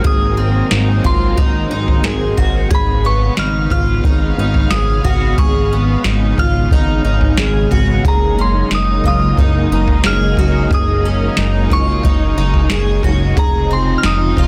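This blissful, dreamy dream pop excerpt opens with every part already sounding together: a soft vintage rhythm box with a deep kick, crisp snare and toms, a chorused synth bass, a string machine's sustained violin chords, a fingerpicked twelve-string acoustic guitar and a soft synth bell carrying the melody. High above, the bell has a pure, full-bodied FM tone that decays after each fast attack, trailed by chorus and digital delay. The string machine's sawtooth violins enter each chord on a slow attack and hold it with a vintage, bright ensemble chorus, while the octave-doubled twelve-string arpeggios shimmer through lush chorus and delay. Underneath, the retro synth bass blends pulse, sawtooth and sine tones with a filter pluck and a mellow, glossy sustain, sitting prominently alongside the analog drums. The harmony moves through Ab9, Db7/Ab, Gb69 and Dbmaj9/F, all set in light reverb within a dense, heavily limited modern master.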